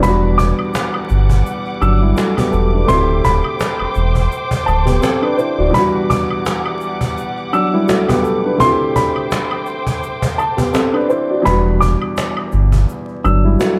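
A swung 84 BPM boom-bap hip-hop groove in E minor rides on a snappy, distant cajon played with soft hands and a background egg shaker and woodblock, while a mellow grand piano with a tape tinge accompanies up front, an intimate, woody upright piano with slapback echo carries the melody, lush bowed strings hold Em9 and D7sus4 chords until 11.4 seconds, and a deep sine sub bass drops out at 5.7 seconds and returns at 11.5 seconds, with vinyl crackle hanging over this moody, dark cut from a longer piece.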